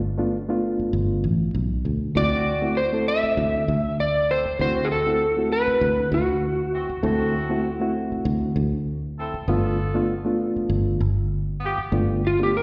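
Blues, gritty and rollicking, with a light swing, heard live through the venue's PA in a recital-hall reverb. A round, foam-muted fingered electric bass and a reedy, lightly overdriven electric piano with slapback echo open the excerpt, and a punchy, vintage horn section soon adds sustained chords as the harmony moves from G9 to D9 and back. An up-front, slightly broken-up electric slide guitar, also with slapback echo, carries the melody from 2.2 seconds to 7.9 seconds, then returns briefly at 12.3 seconds.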